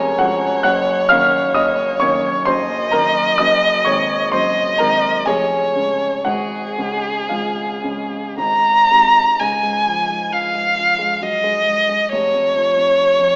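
Warm and tender, this romantic classical duo for violin and baby grand piano moves in triple metre with a freely flexing rubato feel. A single bowed violin carries the melody up front, its warm tone shaped by a soft attack, expressive vibrato and gliding portamento. Beneath it the baby grand piano supplies the accompaniment, close and present, with a dark, mellow voice and short sustain that reaches from deep bass notes into the high treble. A new section begins at 9.4 seconds and continues until the passage is cut off at 13.4 seconds, as it is taken from a longer piece. A wet scoring-stage reverb surrounds the pair, and the recording carries the filtered character of AM radio.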